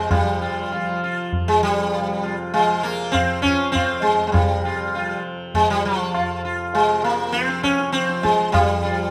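A sitar and tanpura sound together at the very start of this short fragment of Hindustani classical music: an F raga darbari at 100 BPM in a 7/4 cycle with a straight feel and a longing, meditative mood. Up front, the plectrum-plucked sitar carries the melody between F3 and F4, its bright, buzzing tone ringing with sympathetic strings. Beneath it, the softly plucked tanpura holds a warm, shimmering drone from F2 to F3, sitting lowest in the balance. The low-tuned tabla joins at 0.1 seconds with short-ringing acoustic strokes that carry a small-room character, sitting between the other two parts in level. A moderate recital hall reverb surrounds the performance, and the music moves into a new section at 4.3 seconds before the tabla stops at 8.8 seconds and the fragment ends at 9.1 seconds.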